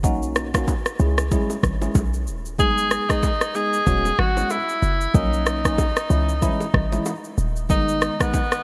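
A swung 16th-note groove at 94 BPM in 4/4 drives this hypnotic, mellow afrobeats excerpt, built on a deep-kicked electronic drum kit with rim click and shaker up front, a punchy, tight 808-style bass with a fast attack, and very quiet, saturated congas and bongos beneath. A worn, slightly out-of-tune tine electric piano, played through a combo amp with subtle chorus, carries the Bmaj7, C#m, G#m and E6 changes. At 2.6 seconds a clear, vintage tenor saxophone solo enters in a jazz style, with scooped notes, gentle vibrato and delay, all set in bright 1980s-style digital production with a touch of reverb.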